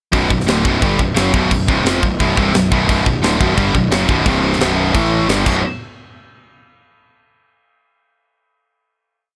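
A straight 4/4 pulse at 175 BPM drives this short, heavy and relentless heavy metal piece in B minor, with a tight, polished drum kit sitting up front in an airy big room, its high-tuned snare, tight kick and bright cymbals laying down a big rock groove. Behind it, three guitars churn out power-chord riffs: one overdriven, one distorted and double-tracked, and one high-gain. A growly, fuzz-laden picked bass doubles the riff in driving eighth notes. The riff descends through C5, B5, A5 and G5 before a drum fill at 5.5 seconds leads into a final hit that rings out until 7.0 seconds.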